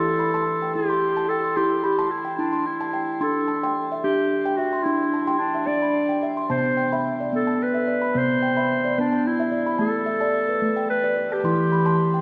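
This is a gentle, meditative world piece in E minor, moving at 109 BPM in 3/4 with a straight feel, cut from a longer work. A steel tongue drum struck with soft rubber mallets rolls out round, pure, ringing arpeggios while an up-front clarinet with a vintage, classical-style tone carries the solo melody, both bathed in shimmer reverb and playing together through all 12.2 seconds. The chords move from Em through D5, C and A5 before returning to Em, and a dark, warm production sits the pair inside a wet concert-hall reverb.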